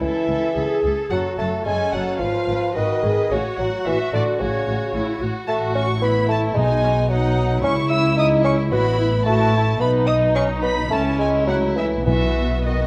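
At a quick 110 BPM in 4/4, played with a flexible rubato, this graceful and cheerful classical-period excerpt for symphony orchestra sets a con sordino violin section on the melody, with a second violin section sounding a higher line above it. A dark, up-front bassoon and veiled, muted violas supply the accompaniment, while cellos and double basses hold the bass over harmony that moves through F#m, B and C#m. Soft-mallet timpani add round, very quiet strokes at 6.6 s and 12.1 s, all set in a moderate scoring-stage reverb captured with close, detailed microphones.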